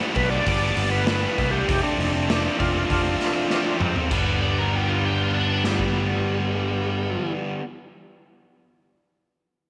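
A straight 4/4 pulse at 98 BPM drives this sunny, swaggering classic rock excerpt in G mixolydian, cut from a longer piece, with the harmony moving from G to F at 1.7 seconds and back to G at 4.1. A raw garage drum kit with a punchy kick, medium-tuned snare, hi-hat, toms and crash cymbal sits in a pumping stone room, saturated and gritty with a rolled-off top. A bright overdriven guitar riff in the background and a tight distorted guitar riff run from the start, while a growling picked bass, direct and amped with overdrive, anchors the low end. A thick, percussive tonewheel organ with key click, second harmonic percussion, chorus vibrato, slapback echo and a slow rotary speaker takes a solo over the opening section, capped by a drum fill just before the change. An octave-fuzz lead guitar with a dark tone then enters at 4.4 seconds with a second line, all set in a moderate echo chamber reverb.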